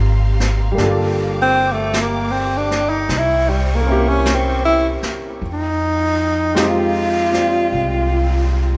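A close-miked tenor saxophone carries the melody from the start, its vibrato and scooped notes up front, over intimate piano with audible action noise, a woody, growly pizzicato upright bass, and lush bowed strings sitting in the background. Vintage brushes on snare and hi-hat enter at 0.4 seconds with a rolled-off top, as this wistful, smoky jazz ballad in C minor drifts at 52 BPM with a swung feel. The harmony moves through Eb69, Gm7, C7b9 and Fm9, and the whole short excerpt is bathed in a wet recital hall reverb.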